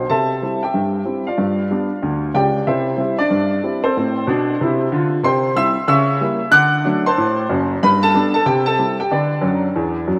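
A woody, up-front upright piano plays a playful, exuberant stride-jazz solo at 186 BPM in C major with a swung 4/4 feel, moving through a C, G7, Am, C#dim7 and D7 progression and closing this short fragment with a fill at 9.4 seconds, its polished tone touched by analog chorus and delay and bathed in a wet plate reverb that gives the whole mix a dreamy glow.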